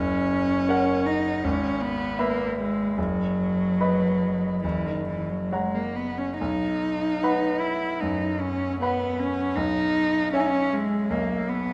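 Flowing in a rubato 4/4 at roughly 67-81 BPM, this lyrical, serene romantic classical excerpt in B major pairs a single up-front bowed cello, rich and smooth with vibrato, singing the melody from D#3 to E4 over a bright, brilliant grand piano accompaniment spanning F#1 to B5, all within a church or concert hall whose recital-hall reverb lingers for 1.6 seconds through chords moving from F# to E/G#, B/F#, back to F#, then B and C#m/B across 11.7 seconds.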